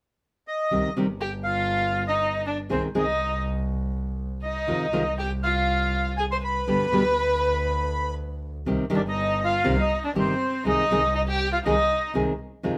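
A rubato 4/4 pulse around 121 BPM carries this tense, dramatic tango in C harmonic minor, cut from a longer piece. A bright, reedy bandoneon takes the melody from 0.5 seconds, sitting between C5 and C6, while a fingerpicked nylon-string guitar in a classical style sits up front with the accompaniment. A single bowed double bass anchors the low end with a nasal, gut-string tone and an airy bow, played close in a period style. From 1.2 seconds a bowed violin, also up front, adds an expressive second line full of vibrato and portamento. The harmony moves from Cm through Ab/C, Fm7 and G, then a second section at 8.7 seconds returns to Cm and Ab/C, all set in a moderate studio reverb.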